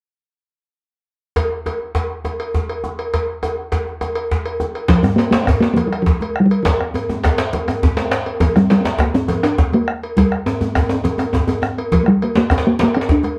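Driving and powerful, this West African drum ensemble excerpt in 12/8 at 136 BPM opens with metallic cowbell and a tight, cracking djembe with metal rattles, then at 4.9 seconds an up-front talking drum with a short ring carries the melody in Bb major pentatonic over round bombo, thick-skinned congas in the background and a second, deep djembe, all heard through a small room and a worn, warbling cassette tape with pitch drift.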